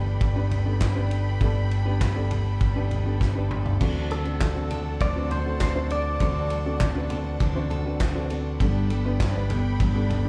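A picked electric bass sits up front, amped and warm, anchoring this uplifting, anthemic piano-driven pop excerpt in a straight 4/4 feel. Alongside it, a felt-muted upright piano plays soft, intimate accompaniment with a boxy, mellow tone, audible action noise and a touch of slapback echo, while a lush, woody string section holds sustained, vibrato-rich chords high above. A distant, roomy drum kit with dark cymbals, a fat snare, a tight kick, handclaps and toms drives the track, landing a fill at 3.2 s. At 3.8 s, as the harmony moves from Gadd9 to D7, a jumbo steel-string acoustic guitar enters in the background with a full-bodied picked riff, fresh strings and finger squeak. From 4.1 s a clean, compressed electric guitar recorded direct adds a bright, twangy melody coloured by analog chorus and slapback echo. The whole performance sounds like a live gig heard through a venue's PA, with club reverb and small-room ambience.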